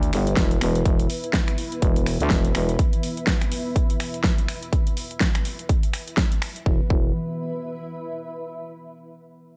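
A growling, thick FM bass anchors this gritty, aggressive bass house excerpt, sitting up front with a fast attack and sidechain pumping before dropping out at 2.8 seconds and returning briefly near the end. An overdriven electronic kick drives the 4/4 groove with a punchy, layered hit, joined by a big-room dance kit of finger snaps, metallic hi-hats and a huge snare, also overdriven, with a swung sixteenth-note feel. Underneath, a deep, moody pad of detuned sawtooth voices with a sub octave holds sustained chords, its chorus and built-in reverb pumping against the kick while a filter sweep and fade-out run across it until about 6.7 seconds. A barely audible sub drop and an impact mark the opening, and a cloudy, evolving granular pad drifts higher up, blurred by its own reverb. The drum kit falls away as the closing section begins and the kick follows shortly after, leaving the granular texture to carry on alone to the end at 8.6 seconds, in an otherwise dry, close mix.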